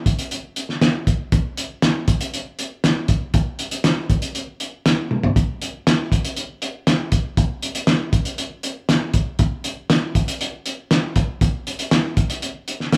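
A straight 4/4 rock beat at 119 BPM drives this hypnotic, trippy fragment of a longer piece, played on a cloth-damped, thuddy acoustic drum kit of hi-hat, kick, snare and toms that sits up front with a fat snare, tight kick, muffled and gritty lo-fi tone, and a rolled-off top, captured live in a small room with light reverb, and breaking into a drum fill at 5.1 seconds before running to 13.0 seconds.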